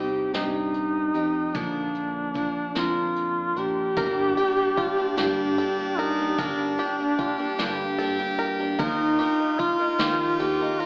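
Nostalgic and peaceful, this acoustic folk fragment from a longer piece sways in a slow 6/8 at 50 BPM over Cm, Bb, Gm and Ebsus2, with a warm duduk singing the melody up front with vibrato and scooped notes. A bright picked archtop guitar with audible finger squeak and a punchy fingered electric bass accompany it from the start, while a brushed vintage kit with a rolled-off top joins at 0.3 seconds. At 4.0 seconds a clear harmonica adds a second line and a twangy fingerpicked banjo ripples arpeggios in the background, all set in a moderate concert-hall reverb with an old AM-radio tone.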